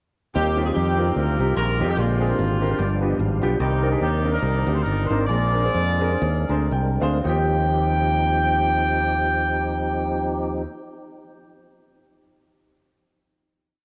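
A brief, reverent and uplifting uptempo gospel piece in Eb major and swung 4/4 opens at once with a tight horn section, grand piano, tonewheel organ and fingered electric bass, the tempo ranging between 110 and 148 BPM. The growly, punchy bass sits up front with walking and running lines and slides, while the natural-sounding piano places close-voiced off-beat chords over harmony that moves from Eb69 through Bb13, G7 and Cm9. Set back in the mix, the lightly overdriven organ holds drop2-voiced chords with key click, second harmonic percussion, chorus vibrato and a slow rotary speaker, adding grace notes and a short fill at 2.4 seconds. The distant, roomy horns carry a jazz-style melody built from song-like motifs, and the music slows down from 3.6 seconds as the breakdown continues, with a brief piano fill near its close. At 7.2 seconds everything arrives on a final Eb69 chord, bathed in a fairly long plate reverb.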